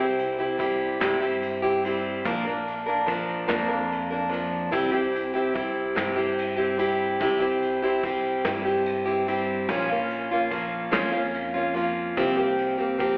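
Heard as a live gig through the venue's PA with club reverb and a telephone-like tone, this intimate, wistful acoustic folk excerpt in 6/8 at 48 BPM puts a picked, plugged-in parlour steel-string guitar with fresh strings and slapback echo up front, over a woody, growly pizzicato upright bass and a soft brush kit in the background with dark cymbals, a punchy kick and a medium-tuned snare, as the chords move from C to Bb, back to C and then to Bbm before a closing C7sus4.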